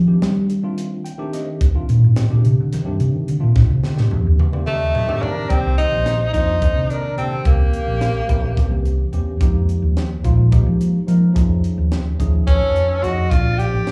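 Nocturnal and funky, this short cut of electric jazz fusion moves at 215 BPM in 7/8 in C dorian, heard as a live club gig through the venue's PA with light reverb and small room ambience. A dark, round hollow-body fingered electric bass opens with a solo up front. It is joined by a worn, slightly out-of-tune tine electric piano with slapback echo and a crisp fusion kit with a punchy kick and a high-tuned snare, which plays a fill from 3.6 to 5.5 seconds. At 4.7 seconds a bright tenor saxophone takes the melody with vibrato and scooped notes, shadowed in the background by an airy, distant concert flute. Both carry slapback echo over chords that travel from Cm69 through Fm11 and F7alt to Bbmaj9.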